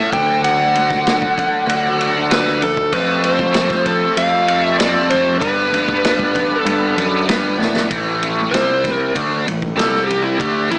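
Psychedelic rock at 96 BPM in a hazy, kaleidoscopic mood, tuned to A4 = 445 Hz, where an up-front overdriven slide guitar with slapback echo carries the melody over a bright, double-tracked, biting guitar riff through a rotary speaker, a round, punchy fuzz bass, a vintage drum kit with a punchy kick and dark cymbals, very quiet high-tuned congas, and a very quiet, reedy tonewheel organ with key click holding chords over D, Fadd9 and G until 7.9 s, when the organ stops and, after a drum fill from 7.3 s, the slide guitar takes a solo over A5 and C5, all set in moderate spring reverb with a small-speaker sound.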